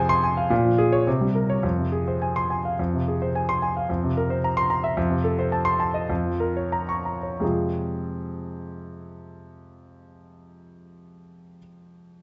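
A solo grand piano opens this stormy, agitated passage from a virtuoso classical study in F minor, its clear, worn, natural tone sitting up front with short sustain, ranging from F2 to Db6 and tuned to A4 = 439 Hz. In 2/4 with free rubato between 85 and 112 BPM, the harmony moves from Fm through Bbm7, C7 over F and F7, and the tempo slows from 4.4 to 7.4 seconds before the music settles back on Fm. A moderate recital hall reverb surrounds the instrument, and the dark production cuts off the top above 7.8 kHz.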